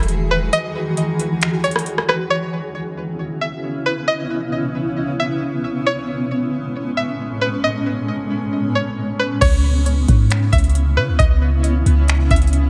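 Atmospheric cloud-rap hip hop in C# minor at 135 BPM with a half-time feel, this ethereal, spacious excerpt drifts through Emaj9, C#m7 and Amaj9 chords as a cloudy, evolving granular pad with built-in reverb and sidechain pumping sustains beneath a twangy, string-like resonator pluck melody coloured by chorus, low-pass filter and tape echo. A booming analog drum machine with a deep kick, metallic hats, a crash cymbal, snaps and rim clicks carries 12-bit sampler grit and opens the piece alongside a sine-toned 808-style bass, which drops away at 0.5 seconds while the drums continue until 2.2 seconds. The drums and boomy bass return together at 9.4 seconds.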